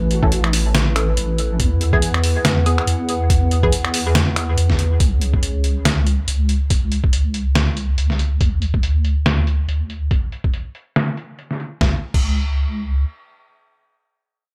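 A half-time groove at 141 BPM in 4/4, with 16th notes swung at 56%, drives this cavernous, meditative stretch of deep dubstep in C# phrygian, cut from a longer piece. A thumpy, gritty electronic kick and an up-front trip hop kit of snare, hi-hat, finger snaps and crash cymbal both have a pitched-down, compressed sampler character, re-recorded in a small room, with low-pass filtering muffling the kit and a filter sweep on the drums from 5.0 seconds. Beneath them, a soft wobble bass built from triangle and sine waves sits up front, detuned and thickened with chorus, and holds until 13.0 seconds. A moody analog pad of square, sawtooth and sub-octave tones, wave-folded with a slow attack and subtle chorus, sustains chords moving from A to E before its own filter sweep and exit at 6.7 seconds. Early on, muted, full-bodied sawtooth chord stabs pluck through phaser and dub echo, while a breathy, flute-like lead with vibrato and echo sounds a single faint note in the background, all set in a digital ambience.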